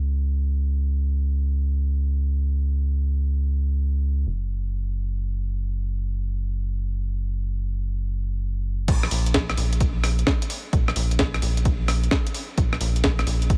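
A skippy two-step garage groove swings its sixteenths hard in four, giving this late-night UK garage fragment its loose, lurching bounce. For the first 8.9 seconds a rubbery square-wave bass holds the floor alone, its hollow, resonant tone shaped by a fast filter pluck and a sustained, dark tail, with tube saturation adding body as it sits up front in the low register. At 8.9 seconds the drop arrives, bringing in a punchy, overdriven analog kick alongside a breakbeat sampler-style kit. That kit is compressed, pitched up and gritty, with a medium-tuned snare, rim clicks, hi-hats and crash cymbal all dulled by low-pass filtering into a tape-tinged haze. The mix is dry and close, with the bass and kit pushed forward, and the clip cuts off at 13.6 seconds mid-groove.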